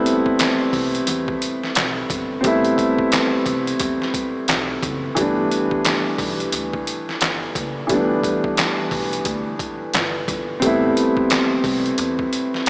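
Boom-bap hip-hop at 88 BPM with a swung sixteenth feel, confident and soulful, where a dark, boxy concert grand piano sits up front with long sustain over Am7 and G6 chords, a muffled, pitched-down sampler-style kit of thumpy kick, medium-tuned snare, hi-hat and handclaps enters at 0.1 seconds, a woody pizzicato upright bass joins in the background at 0.6 seconds, and a huge ambient reverb bathes the mix in a dreamy, small-speaker haze.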